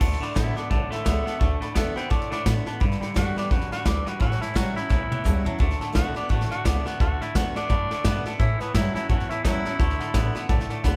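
A rollicking rockabilly groove starts at once in D major at 172 BPM with a swung 4/4 feel. Up front, a soft brush kit with a medium-tuned snare, tight kick and dark cymbals drives it, while a pizzicato upright bass with gut strings adds a woody, thumpy pulse underneath. A twangy electric guitar plays a clean riff with spring reverb, and a picked dreadnought acoustic guitar with fresh strings and the odd finger squeak fills in behind. A metallic, jangly tack piano sits back in the mix. From 0.2 seconds a breathy, raspy tenor saxophone takes a gritty, punchy vintage solo, and a drum fill arrives around 4.9 seconds. The band sounds live in one room with light reverb, in a short excerpt cut from a longer piece.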